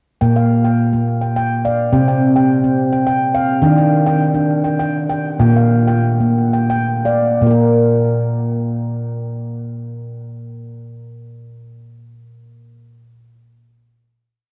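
In a straight 3/4 that slows from 3.6 to 7.4 seconds, a solo handpan plays a dreamy, gentle world-meditative piece, weaving an interlocking ostinato over a dotted bass figure with the fingertips. Its dark, ringing stainless-steel tone sits up front, colored by cassette tape and analog delay within a lush hall reverb on a home cassette recording. The short piece comes to rest on a final note that sounds from 7.4 to 11.9 seconds.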